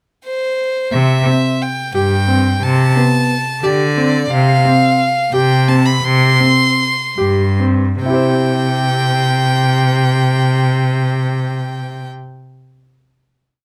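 A clear, intimate small-room sound frames this short, complete contemporary chamber piece in 5/8, hopeful and playful in C major, moving at a brisk eighth-note pulse of 140-179 BPM that slows between 4.3 and 8.0 seconds before settling on a final C chord at 8.0 seconds. The violin opens alone with a pickup, its earthy, airy-bowed tone carrying a motif-based melody in sentence-like phrases, while the focused, slightly boxy cello enters at 0.9 seconds with root-and-fifth bass on the main beats. A concert grand piano joins at 1.3 seconds with a sustained arpeggiated ostinato of deep resonance beneath the two up-front strings.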